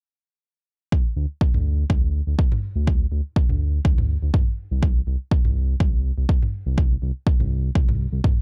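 A deep, tape-warm electronic kick drives this short afro house cut at 123 BPM with a light sixteenth-note swing, joined at 1.2 seconds by a smooth, dark sawtooth-and-square synth bass that pumps against it with vibrato under a filter sweep, while softer electronic toms enter at 1.5 seconds, all in a dry, gritty, driving and spiritual mix.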